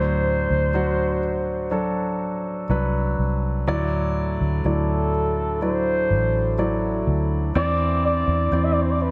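Pop ballad with a hopeful, emotional mood, where a mellow, jazz-style flugelhorn carries the melody with light vibrato from a distance over an intimate concert grand piano, its action noise audible and its sustain long, and a round, punchy, foam-muted electric bass up front, while a French horn section enters at 3.7 s with warm classical-style sustained chords in the background, all in a light studio reverb.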